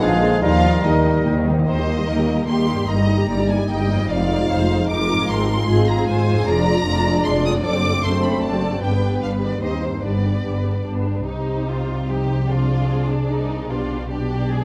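In a straight 3/4 at 149 BPM, this stormy, urgent excerpt from a fast romantic symphonic movement turns from Eb major to C minor at 6.5 s, with lush violins singing the melody over a distant second violin line, expressive violas with portamento, dark woody cellos, focused double basses, a very quiet ringing harp in arpeggios and French horns sustaining chords through most of it, while clarinet, clear oboe, a mellow hollow flute, bassoon and bright trombones color only the opening moments and soft-mallet timpani enter at 0.4 s with a fill until 1.7 s and return briefly at 10.0 s.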